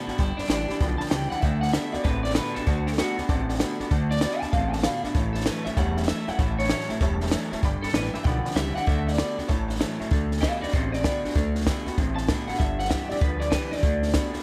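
Retro and upbeat, this rockabilly excerpt swings along at 194 BPM in D major, with a twangy, slightly broken-up electric guitar carrying the melody through spring reverb and tape echo while a second, darker electric guitar from a small old amp drives the low riff. A bright dreadnought acoustic guitar and a jangly, detuned honky-tonk upright piano sit in the background, the piano dropping out at 10.1 seconds, as a fat, saturated sawtooth bass with filter sweeps anchors the low end beneath a dry, up-front cocktail kit with a punchy kick and high-tuned snare. At 10.1 seconds the music moves into a new section featuring a clean electric guitar solo, all set in a light reverb.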